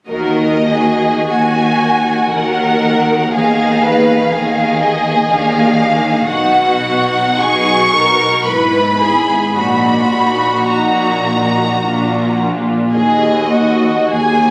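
Elegiac and solemn, this slow romantic movement for string orchestra in Eb minor moves in a rubato 3/4 at 48-64 BPM, with a lush, up-front violin melody above a smooth second violin line, a close viola accompaniment with portamento set in the background, and a rich cello and soft-attack double bass foundation, all heard through concert hall reverb in a phone recording from the room, in a fragment cut from a longer piece.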